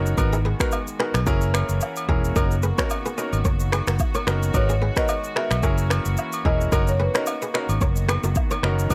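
A bright concert grand piano, a fingered electric bass and a warm studio string section open this smooth, hypnotic afrobeats excerpt at 110 BPM in 4/4, with a lightly swung sixteenth-note feel. The piano is brilliant and polished with short sustain, while the bass sits up front, dark, round and punchy, and the strings hold bowed chords in the background with light vibrato and a reedy, gut-string tone. A deep house drum kit joins almost at once, its deep kick, finger snaps, rim click and shaker layered and up front, and agogo bells and woodblock add close, dry percussion alongside tube shaker and group handclap. From 0.3 seconds a crisp, ringing kora plays a fingerpicked riff through an analog delay, and a woody marimba on rosewood bars carries a short melody from 4.6 to 8.2 seconds. The harmony cycles twice through G#m7, F#7 and Bmaj7/F#, and the whole is captured as a dry, gritty hardware recording.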